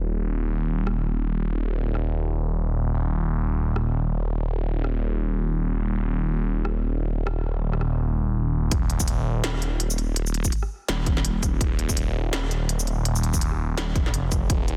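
A thick, swirling detuned saw bass with phaser opens this tense, dark half-time drum and bass excerpt at 166 BPM, sitting up front in a low, saturated register, before a tape-warm industrial kit of clanging snare, crisp hi-hats, rim clicks and shaker joins at 0.9 seconds with a swung feel, and a heavy electronic kick arrives with the drop at 8.7 seconds, all in a dry, dense, heavily limited modern mix.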